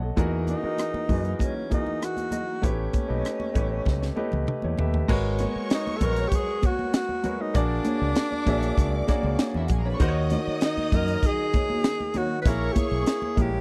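Silky and bittersweet, this lush 1970s-style soul excerpt in G# minor moves at 98 BPM, with a breathy, close-miked tenor saxophone carrying the melody with vibrato and scooped notes over a tight funk drum kit with a high-tuned snare, a round overdriven fingered bass, a clear concert grand piano, a dark, compressed electric guitar riff in the background and very quiet congas, while a distant, bowed violin section enters at 5.1 seconds with a second line after a drum fill, all in a dry, close studio sound.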